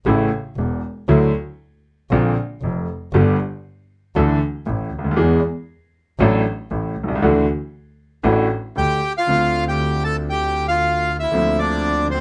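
A reedy, bright bandoneon enters up front at 8.8 seconds to carry the melody over a warm, boxy grand piano accompaniment and a dark, bowed double bass with vibrato and portamento, in this dramatic, passionate rubato tango excerpt set in moderate club reverb.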